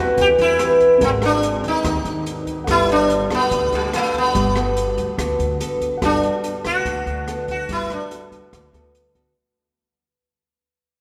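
Bathed in a wet cathedral reverb that suggests a church or concert hall, this short, relaxed and romantic bossa nova excerpt moves at 144 BPM in G major, passing through Am9, Ab9 and Gmaj9. An up-front, buzzing sitar carries the melody with shimmering sympathetic strings. Beneath it sit a fingerpicked classical nylon-string guitar, a long-sustaining grand piano in the background, a woody, growly pizzicato upright bass, and a dark, smooth jazz kit that joins at 0.2 s with hi-hat, rim click and a boomy kick, before the music fades out from 6.0 s to its end at 9.4 s.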